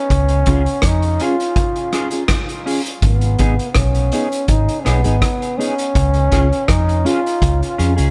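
A breathy, whispered trombone carries the melody up front with vibrato and a soft attack, its lines trailing dub echo across this hypnotic, meditative roots reggae excerpt built on C#, G#m and back to C#. Beneath it, a dark, round, foam-muted electric bass sits heavy in the mix, while a vintage acoustic drum kit with a punchy kick, rim click and hi-hat pumps in a small room with a rolled-off top. A mellow, clean guitar enters at 0.5 seconds with harmonic tremolo and its own dub echo, adding to the light reverb and echo-heavy atmosphere.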